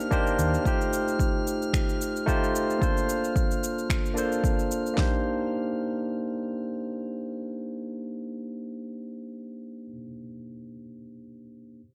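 Dark, lightly reverberant production frames this smooth sunset chillout clip, cut from a longer piece, with a swung sixteenth-note feel. Up front, a barky, overdriven tine electric piano plays through a combo amp with delay. Alongside it until about 5 seconds are a punchy, overdriven deep house kit with a fat snare, layered electronic cabasa and finger snaps, and a glassy, drifting harmonics texture in the background, while a fingered electric bass adds one brief, amped note near 0.4 seconds. After that the electric piano carries on alone, having moved through Cm7, F7 and Bbmaj7 and back to Cm7, until 11.8 seconds.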